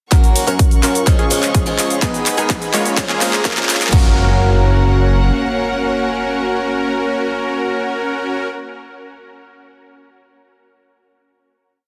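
A dense, heavily limited modern master with light digital reverb opens on a triumphant, uplifting festival progressive house build at 126 BPM in 4/4, set in F# major and moving through F#, C#, G#m and A#m7 before landing back on F# at 3.9 seconds for a final held chord. Up front, a punchy detuned supersaw stab plays dotted-rhythm chords through a low-pass filter sweep and tape echo, while a fat, wave-folded analog bass follows the chord rhythm until 5.3 seconds. An overdriven big-room drum kit drives a four-on-the-floor kick with crash, plus handclaps, cabasa and programmed hi-hats in a drum fill that stops at 4.0 seconds. Behind them, a bright, boxy picked acoustic guitar adds swing-style dotted chords, and a dark chamber string section holds a soft, sul tasto pad with light vibrato, both breathing with sidechain pumping. A very quiet riser and impact enter at 1.9 seconds to carry the transition into the closing chord.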